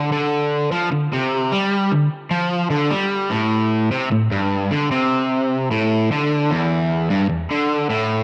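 A straight 4/4 pulse at 150 BPM drives this short, raunchy rock excerpt, carried entirely by a lone overdriven semi-hollow electric guitar that plays solo from 0.0 to 8.2 seconds in a low register between E2 and G3. The picked, double-tracked part sounds bright and hollow-bodied, sits up front, and carries a touch of spring reverb. The overall sound is a dry, close 1970s-style studio recording, tuned slightly flat to A4 = 439 Hz.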